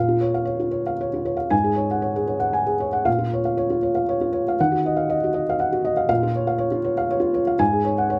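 A felt-muted upright piano plays alone for 8.2 seconds, its dark, thick-felt tone sitting up front in a light reverb and ranging from Ab2 to Ab5. This melancholic, intimate fragment of neoclassical minimalist piano moves at 119 BPM in 3/4 with a rubato feel, cut from a longer piece. In Bb minor, the chords alternate Bbm with Ab7sus4 and Ebmadd9, coming to rest on Ab7sus4.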